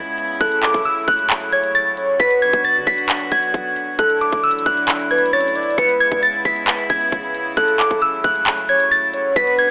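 Brooding and melancholic, this half-time trap cut in F# minor moves at 134 BPM in 4/4, drawn from a longer piece. A glassy, crystalline FM synth bell carries the melody up front from the start, its high line colored by chorus, a low-pass filter and tape echo, while a distant chamber string section holds soft, floating bowed chords beneath it. A deep, boomy 808-style bass sits in the background, and the electronic trap kit enters at 0.2 seconds with a hard-clipped kick, crisp hi-hats and handclaps pushed to the front. At 0.4 seconds a round, octave-layered synth lead adds a second line, its sub-octave body touched with vibrato, chorus and tape echo. The chords cycle through F#m7, Bm, Dadd9 and C#m7 before returning to F#m7, all set in light reverb and digital ambience with a telephone-like sound.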